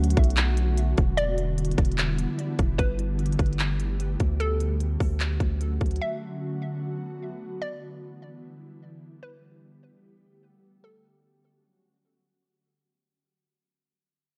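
A hard-clipped trap kick, crisp hi-hats and handclaps sit up front with a deep, sine-like 808 bass in this ethereal, melancholic cloud-rap cut, moving at 149 BPM in a half-time 4/4 feel until both drop out at 6.0 s. A hollow, bouncy square-wave pluck carries the melody with ring modulation, a filter sweep, chorus and tape echo, floating over an airy, detuned pad that breathes with sidechain pumping through ensemble chorus and its own reverb, cycling Bm7, Em7, Gadd9 and Dmaj7. The whole cut is fading out and sounds like worn cassette tape, warbling with pitch drift in a nearly dry space.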